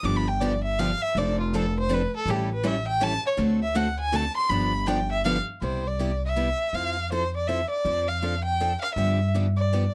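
Close, detailed microphones and light reverb give this short cut from a longer piece of jazz manouche a present, detailed sound, swinging playfully in 3/4 at 161 BPM in C major. Up front, a nasal, smoothly bowed violin with vibrato carries the melody, taking a solo through the first 5.6 seconds, while a pizzicato upright bass on gut strings adds a woody, thumpy low end. Two picked steel-string guitars accompany: a bright parlour with fresh strings plays throughout, and a full-bodied dreadnought in the background drops out at 5.4 seconds, just before the harmony settles onto Cmaj9.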